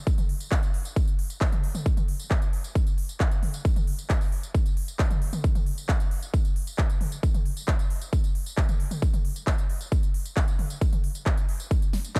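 A straight trance groove runs the whole 12.2 seconds, built around an up-front, punchy electronic kick drum and a layered big-room dance kit of crisp hi-hats, a punchy snare, handclaps, tambourine and toms, both carrying overdrive and a touch of studio ambience. The mood is bittersweet yet soaring, set in a dark digital space. A drum fill at 11.9 seconds closes this cut from a longer piece.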